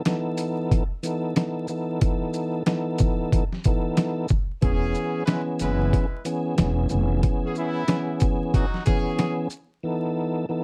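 A dark, lightly reverberant boom-bap hip-hop excerpt with vinyl crackle and a soulful mood, swinging at 92 BPM in E major, where a lightly overdriven tonewheel organ with key click and chorus vibrato opens over gritty, pitched-down sampler drums with a thumpy kick, before a woody pizzicato upright bass and tight, clear trumpet stabs with slapback echo arrive at 4.6 seconds as the chords move from B7/E to E6.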